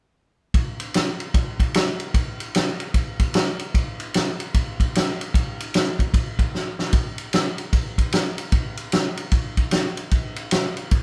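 Rock drum excerpt at 150 BPM in 4/4 with a swung eighth-note feel, gritty and driving, where an up-front vintage acoustic kit plays from 0.5 to 11.0 seconds with a punchy kick, fat snare and dark ride cymbal under a rolled-off top, breaking into a fill at 6.5 seconds inside a small room's natural reverb that gives the sense of a band playing live together.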